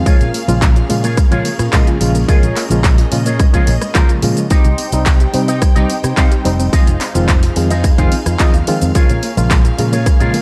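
A dark, warm production with a faint mains hum frames this sensual, groovy nu-disco excerpt, cut from a longer piece and riding a straight four-four pulse. A punchy, overdriven electronic kick sits up front, layered with a house kit of handclaps, hi-hat, rim click and shaker that shares its overdrive and large-room sheen, while a vintage, band-limited tambourine stays in the background. Underneath, a round, amped fingered bass carries the low end, and a reedy, barky electric piano comps through its built-in speakers with light overdrive, medium tremolo and tape echo. A twangy, picked electric guitar through an envelope filter plays a bright, clean riff coated in analog chorus and tape echo, and a soft, round pluck adds arpeggios with chorus, digital delay and sidechain pumping from the background. A woody studio string section holds sustained chords with light vibrato and a soft attack, also pumping to the sidechain, as the harmony moves from Bbm7 to Cm at 4.5 seconds, then to Fm7 at 6.7 seconds and back to Bbm7 at 9.0 seconds.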